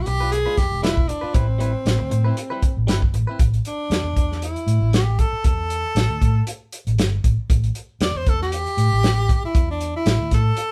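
Straight-eighth soul blues in A minor at 117 BPM with a brooding, smoky mood, built on a muted, round, punchy electric bass and a tight, up-front soul drum kit of kick, snare and hi-hat with a rolled-off top. A bright, twangy, clean electric guitar plays compressed stabs over E7b9 and Am9 until 3.4 s. The close-miked tenor saxophone, clear and full of vibrato, carries the melody from the start, and from 3.4 s it takes a jazz-style solo to the end of this short excerpt, in a room with moderate reverb that feels like a band playing live.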